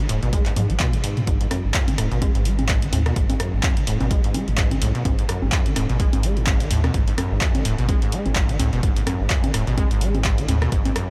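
Gritty and trippy, this swung acid house excerpt sets a squelchy, resonant sawtooth acid bass riff up front, run through overdrive, lush chorus, analog delay and sidechain pumping, over a deep, round sine sub bass that also pumps. A punchy, tape-warmed kick and an analog drum machine of congas, handclaps, hi-hat, rim click and toms, re-recorded in a small room, fire off a quick fill at 0.6 seconds, all under light reverb.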